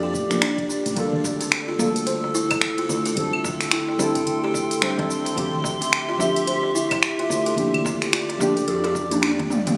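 Organic downtempo at 109 BPM in 4/4, this earthy, warm excerpt swings its sixteenths gently and is cut from a longer piece. A deep, mellow chord stab with a vintage, warbling tone and a filter sweep pulses under sidechain pumping, tape echo and shimmer reverb, while a detuned, nostalgic tape-like pad with a sub octave holds sustained chords above it through Bb6, Gm9/D, Am7/D, Dm11 and back to Bb6/D. A buzzing kalimba, woody and ringing with a thumbnail pluck, plays arpeggios through tape echo and shimmer, and a growly, hollow-bodied fretless electric bass adds round, punchy low notes with tube saturation. Up front, an organic electronic drum kit of claves, finger snaps, smooth hi-hats, shaker and toms carries the groove, with a deep electronic kick sitting in the background and a small, dry clay-shell darbuka played with soft hands entering at 1.1 seconds. A drum fill arrives at 8.7 seconds, and the whole mix sits in a huge ambient reverb with a phone-in-the-room character.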